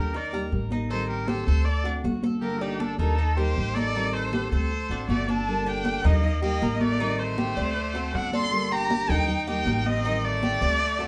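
A sultry, nostalgic Cuban son and guajira passage opens with a clear, bowed erhu carrying the melody up front with vibrato and portamento, alongside a brilliant trumpet second line with scooped notes, a full-bodied fingerpicked nylon-string guitar, metallic double-stringed tres arpeggios and a woody, thumpy pizzicato upright bass. Ringing, high-tuned congas played with soft hands enter at 0.1 s, close and dry, as the band plays live in one room with moderate reverb. The harmony cycles through Eb, Am7b5, D7 and Gmadd9 across both sections.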